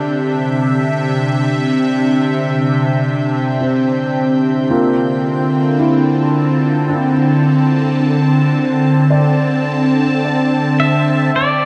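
Unhurried and straight in three, this spacious, melancholic ambient passage is a short cut from a longer piece, drifting through a dark, warm production soaked in a huge reverb. An evolving wavetable pad sits up front with sustained chords, its detuned, morphing triangle tone bright and gently phased, moving from C to Bbmaj9/D at 4.7 seconds. Beneath it, a mellow analog drone of warbling, wave-folded sawtooth and pulse waves with chorus and a vintage character fades out over the passage, as does a rich chamber violin section bowing a high, reedy gut-string texture with light vibrato and shimmer reverb in the background. A soft, felt-muted upright piano enters at 3.6 seconds with intimate arpeggios trailed by delay and shimmer. At 10.8 seconds a clean, compressed electric pedal steel guitar steps forward with a brief slide melody, played with fingerpicks and volume swells.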